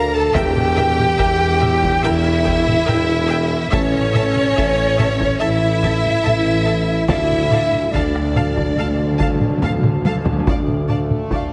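This cinematic, epic orchestral film score excerpt moves at a slow 71 BPM in 4/4, with a dark, epic mood built over chords from Edim through A and Dmadd9 to Dm. A rich, lush symphonic violin section carries the vibrato-laden melody, shadowed by a hollow, pure concert flute in the background and a soft-attack studio violin section with expressive portamento. Beneath them, a tight French horn section holds sustained chords, while a mellow, roomy tuba, a distant double bass section and a smooth, even cello section anchor the low end, and a close viola section fills in the accompaniment. A close, dry taiko ensemble struck with hard sticks drives the rhythm, joined at 3.7 seconds by timpani on calf heads, which take a fill from 7.1 seconds before a drum fill at 9.6 seconds. The whole mix sits in a wet scoring-stage reverb but is heavily compressed with a dulled, radio-like top end.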